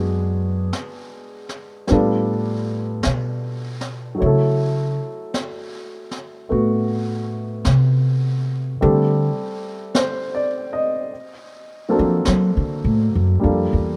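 A slow 4/4 swing at 52 BPM carries this intimate, romantic jazz ballad excerpt in D major, with brushed snare drum and snare drum entering at 0.7 seconds, their high-tuned snare sitting mid-forward with a rolled-off top. Up front, a growly, woody pizzicato upright bass on steel strings takes the solo throughout, while a polished, present upright piano accompanies through chords like G#m7b5, F#m7 and D7b13. Studio reverb surrounds the rough home-demo mix.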